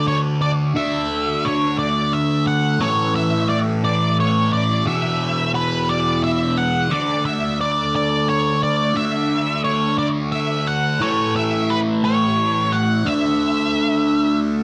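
Kaleidoscopic and hypnotic, this rock excerpt cut from a longer piece rolls along at 58 BPM in a straight 6/8, moving from Dsus2 through A5 and E5 before settling back on Dsus2 at 13.1 seconds. Up front, a bright, double-tracked and compressed fuzz guitar carries the riff through a phaser, while a dark octave-fuzz lead guitar sings the melody between B4 and F#5 with analog delay trailing its distorted, picked notes. Both sit in a moderate echo chamber whose 2.3-second tail gives the short passage a cavernous glow.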